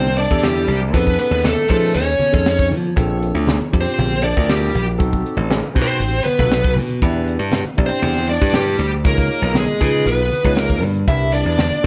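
Electric jazz fusion at 118 BPM in a straight 4/4, this short excerpt from a longer piece feels soaring and bright. A smooth, dark, overdriven lead guitar carries the melody up front, while a second overdriven guitar with a warm tone plays a lower line beneath it. A barky tine electric piano, clean and direct with a phaser, supplies the accompaniment, and a glassy, punchy slap bass sits prominently at the bottom. A crisp, polished fusion kit enters at 0.2 seconds with a high-tuned snare, tight kick and hi-hat, and ringing, low-tuned congas played with soft hands sit distant in the background of a large room. The harmony moves through colourful changes from Cadd9 through F7alt, Bbmaj7, B7b9, Em7 and Db9 before settling on Cmaj9, all under a light reverb.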